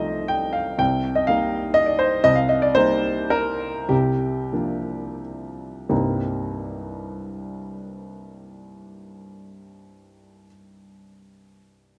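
In a free, rubato three-four that drifts between 82 and 125 BPM, this short neoclassical minimalist piano piece in C dorian opens and then slows from 1.5 to 5.9 seconds, the pace settling like a held breath. A dark grand piano plays alone throughout, reaching from C2 up to G5 with a mellow, vintage tone whose notes fade quickly, placed close and up front. A slapback echo trails the piano, while the dry, open-air setting adds almost nothing around it. The harmony moves from F7 over C to Cm7, passes through Gm7 over C, and returns to Cm7 at 5.9 seconds as a second section begins. The mood is reflective and melancholic, a brief passage lifted from a longer work.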